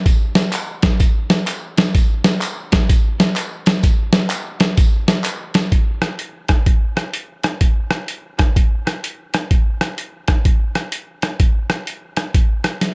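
Soulful and fervent, this gospel excerpt moves at 127 BPM in 4/4 with a swung eighth-note feel. A boom bap sampler-style drum kit sits up front for the whole clip, its hi-hat, thumpy kick, rim click and medium-tuned snare sounding compressed, pitched down and gritty, with a tape-warm character from being re-recorded in a small room. Dub echo trails the kit, adding to an echo-heavy mix set in light reverb. Tambourine and handclaps, with maracas and a group of clapping hands, ring out from a distant, large-room space until about 5.6 seconds, then drop away. From 5.7 seconds a second section carries on with the drums alone through to 12.9 seconds.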